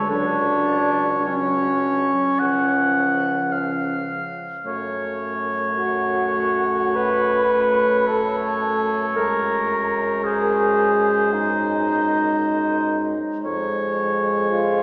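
Moving in a rubato 4/4, this slow romantic movement for wind quintet, cut from a longer piece, feels yearning and elegiac across its 14.8 seconds. A pure, hollow concert flute carries the melody with vibrato and a soft attack, while an up-front warm oboe sings a second line above the accompaniment of a mellow, vintage-toned clarinet and a mellow French horn, and a bassoon with light vibrato anchors the bass. The quintet sits in a wet church reverb that gives the classical sound a spacious glow.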